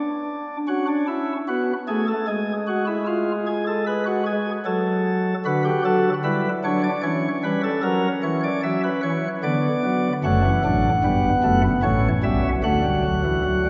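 In a straight, steady triple metre, this contemplative and serious passage from a longer baroque-style four-part fugue features a solo pipe organ voiced with light, bright flute stops whose sparkling chiff sits up front across a span from deep bass notes to high treble, all set in a long, wet church reverb heard from further back in the room with a softened top end, the harmony turning toward a major-key close from 10.2 seconds.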